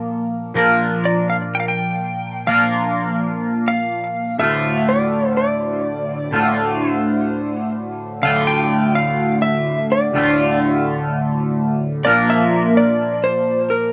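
Trippy and dark, this rock excerpt moves at 125 BPM in a straight 4/4, set in D minor with a tuning of A4 = 439 Hz. A twangy, clean electric guitar carries the riff from the first moment, sitting up front with a double-tracked, phaser-coloured sound that spans from D2 to Bb4. At 1.1 seconds an electric slide guitar enters with the melody, its tone compressed and slightly broken-up, trailed by tape echo as it ranges from Bb4 to G5 above the riff. The harmony opens on Bb, shifts to Dm at 4.4 seconds, and returns to Bb near the close, with a new section beginning at 8.2 seconds. The recording has a dry, close 1970s-style studio character touched by light reverb, and it is cut from a longer piece.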